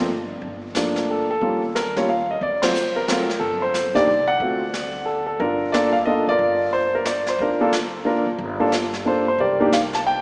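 An intimate, vintage-toned concert grand piano carries the melody up front with audible action noise and a deep, smooth low end in this cool, late-night jazz trio piece in three, cut from a longer performance, while a woody pizzicato upright bass sits in the background, a brushed drum kit with a boomy kick enters at 0.4 seconds, the band hits an accent together at 2.6 seconds, and a long cathedral reverb and small-speaker sound colour the whole.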